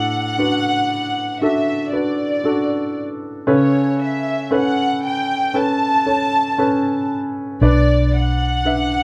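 Heartbroken and emotional, this slow pop ballad excerpt sets an intimate, close violin section on the melody, its bowed tone soft in attack with light vibrato and a sul tasto color, over a natural-sounding baby grand piano accompaniment. The chords move from D through Aadd9/C# to Bm, and at 7.6 seconds a dark, round, foam-muted electric bass enters with a punchy, amped presence. The band plays live together in a small room with moderate reverb, giving the whole a close, unified feel.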